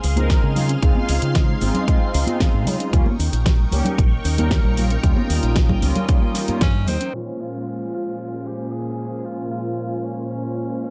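A groovy, cosmic nu-disco excerpt opens on lush string-machine chords with sidechain pumping, a soft round pluck arpeggio, a dark envelope-filtered fingered bass, a pop kit with a fat snare and metallic hats, and ringing cabasa and congas. It is soon joined by mellow, detuned synth brass with tape echo and a punchy electronic kick up front. A band accent at 6.6 seconds ushers in a bright, roomy tenor saxophone solo over a filter-swept string bed, with a faint downlifter from 7.3 seconds.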